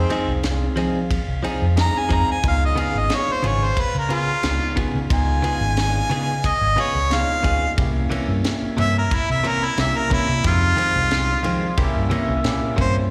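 A bright, close-miked harmonica takes a jazz-style solo from the very start, its scooped notes and light vibrato colored by overdrive, slapback echo and analog delay, in this mournful, smoky straight-eighth soul blues cut from a longer piece. Beneath it, a barky, gritty tine electric piano through a combo amp and a twangy, direct-recorded clean guitar playing stabs both carry slapback echo, while a distant, mellow horn section holds sustained chords in the background. A round, foam-muted fingered bass and a tight funk kit with a high-tuned snare, kick and ride anchor the groove over chords moving from Fm7 through Db7 to C7b9, all heard as a live gig through the venue's PA with recital hall reverb.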